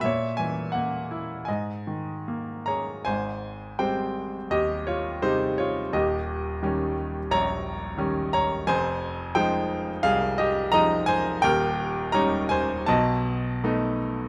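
Rubato timing guides this lyrical classical solo piano passage, loosely in 4/4 and moving between 73 and 89 BPM. A bright baby grand piano carries everything alone, reaching from Eb1 up to A#5, its tone brilliant, polished and up front with a short sustain. The brief opening passes through F#7/A# and G#sus2 before settling into Ab major at 3.1 s, where the harmony moves through Abmaj7, Eb7, Fm7 and back to Eb7 before a closing turn to B7. The mood is bittersweet and cool, set in a dark, warm production with light reverb around the instrument. Lasting 14.3 seconds, this excerpt is cut from a longer piece.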